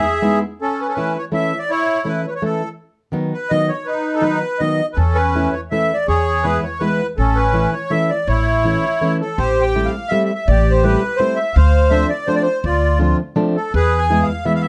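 Light reverb and a dark production frame this nostalgic, charming musette waltz at 164 BPM in 3/4, taken from a longer piece and shifting from A major to A minor at 9.4 s. A reedy, sweet accordion with light tremolo tuning carries the melody up front, while a boxy, fingerpicked, plugged-in old ladder-braced acoustic guitar supplies the accompaniment from the start. A woody pizzicato upright bass with steel strings joins at 5.0 s and stops at 14.2 s.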